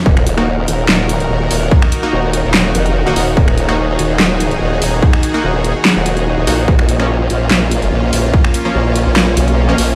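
A saturated, formant-filtered wobble bass wobbles up front through this chaotic, aggressive heavy wobble dubstep, moving from Eb minor to Bb minor at 6.7 seconds over a half-time 145 BPM groove. A distorted electronic kick, which drops out at 8.4 seconds, and a layered dubstep kit with a huge snare, bright hi-hats, finger snaps and handclaps push hard beneath it, while a lush, detuned supersaw pad pumps under sidechain and punchy supersaw stabs ring out with delay. The whole piece sounds as if blasted through a big sound system in a bare stone room, and it is cut from a longer piece.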